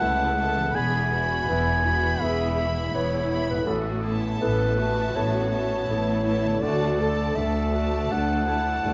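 Moving and hopeful, this short cut from a longer cinematic film score unfolds in A major at 82 BPM in 4/4, its rubato feel giving the phrasing an emotional, breathing quality. A dark, classical-style solo clarinet sits up front with a second line, while a smooth, even violin section carries the high melody between A5 and B5 with rich vibrato. A second violin section plays a focused supporting line in the background, and a viola section adds close, bowed accompaniment. A clear, intimate grand piano with audible action noise provides polished accompaniment in the background, and a very quiet concert harp rings out mellow, fingerpicked arpeggios. Underneath, an intense cello section and a distant, lightly vibrato double bass section form the bass, the harmony moving from Aadd9/C# through E and Aadd9 to D by 6.6 seconds, all held in a moderate scoring stage reverb.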